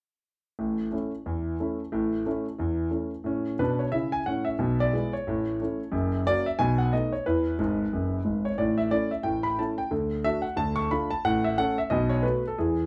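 A concert grand piano, intimate and up front with audible action noise, deep bass and short sustain, plays exuberant, playful swung stride jazz alone from 0.6 to 12.9 seconds in this cut from a longer piece, closely and naturally captured in light reverb, with a brief fill at 7.6 seconds amid chords moving from A through F# and B7 to E and D before Dm and a closing B5.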